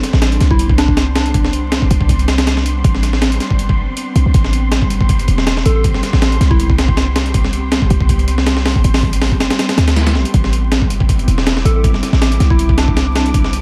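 A swung breakbeat at 160 BPM in 4/4 drives this nostalgic, dark stretch of drum and bass and jungle in A minor. The compressed, gritty sampler-style kit pairs a thumpy kick and high-tuned snare with hi-hat, up front in a studio reverb. A deep, boomy 808-style bass joins at 0.1 s, sine-based with a noise layer, its fast-attack notes decaying low beneath the drums. Behind them an ethereal pad holds an Am11 chord throughout, its detuned sawtooth and triangle voices thickened by ensemble chorus, reverb and vintage 12-bit sampler coloring, while a breathy, wind-like tuned noise texture hovers high in the background. A soft, round FM lead with a keys-like, warbling tone surfaces in brief phrases from 0.5 s, carried by chorus, vibrato and dub echo. A faint electronic swell arrives at 9.8 s, and vinyl crackle sits over this fragment cut from a longer piece.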